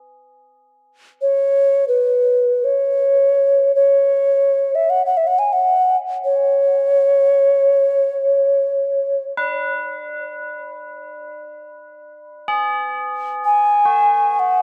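A dark, warm production is bathed in a huge ambient reverb with a 4.4-second decay, giving this spacious, meditative passage of world meditation music, cut from a longer piece, a deep sense of space. Tubular bells open at 0.0 s with a metallic, ringing, solemn texture, struck with a plastic hammer for a bright, airy tone, while at 1.2 s a close-miked alto ocarina enters with a clay-bodied, hollow, mellow melody, its soft attack and vibrato trailed by delay. Both instruments sit up front in free time, tuned to A4 = 438 Hz, with the bells kept much quieter than the ocarina.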